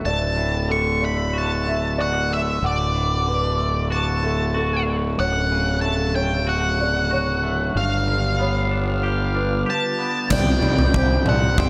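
Post-rock at 94 BPM in D major, this euphoric, cinematic excerpt moves through D, F#m/D and G7 before landing on Csus2. A pure, organ-like pad holds sustained chords very quietly beneath arpeggios from a felt-muted upright piano, boxy and intimate with audible action noise, and a clean, twangy electric guitar, both carrying slapback echo. From 0.1 s a dark, picked octave-fuzz lead guitar plays the melody up front, while a growly, overdriven fingered bass anchors the low end. At 10.3 s a huge arena drum kit enters with crash cymbal, punchy kick and toms, ringing with natural hall character as the harmony shifts to Csus2. Light reverb and a small room ambience frame the whole mix.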